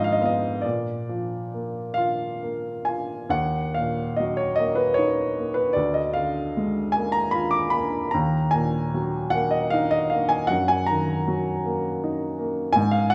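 A warm, natural baby grand piano sits up front in this mournful, melancholic excerpt of a romantic classical nocturne, played alone with free rubato in 12/8 over brooding minor harmonies and bathed in the wet reverb of a recital hall.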